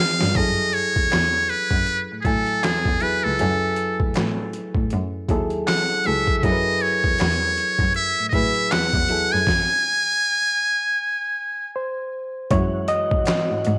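Opening on a drum fill, this sultry, late-night neo-soul excerpt with a swung feel sets a brilliant, buzzy metal-muted trumpet melody up front over barky, lightly overdriven reed electric piano accompaniment, a soft-attack bowed cello bass, a gritty, pitched-down boom bap sampler-style kit with thumpy kick, snare, hi-hat and handclaps, and brief touches of smooth tonewheel organ with slow rotary speaker in the background, before a stop at 9.5 seconds and a reedy electric piano solo from 12.5 seconds.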